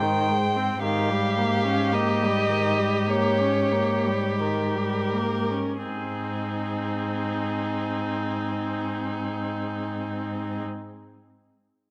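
A moderate recital-hall reverb of about 1.7 seconds wraps this short passage, taken from a longer work, a slow romantic movement for string quartet in Ab major. The mood is tender and serene, moving in 4/4 with a rubato feel somewhere between 39 and 58 BPM, and the tempo slows over the first 5.9 seconds before a new section begins. All four players use mutes throughout the full 10.6 seconds. The first violin carries a veiled melody with vibrato, portamento and a smooth top. The second violin sits up front on a dark inner line. The viola's accompaniment also has vibrato and portamento, while the cello, also up front, holds a low Ab with light vibrato. The harmony rests on Ab, moves to Eb7 over an Ab bass at 0.8 seconds, and returns to Ab at 5.9 seconds.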